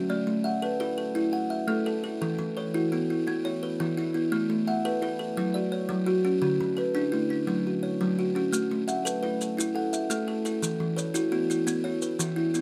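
Two plucked kalimbas open together in a hypnotic southern African traditional groove built on an interlocking mbira-style cycle in a straight 12/8, their arpeggios ringing up front with a woody, warm character. One has a bright, buzzing edge from its hollow box, while the other sounds more solid and boxy, as though heard in a small room. At 8.5 seconds, close, dry maracas add a grainy, mellow shimmer, all under a light reverb in this short excerpt from a longer piece.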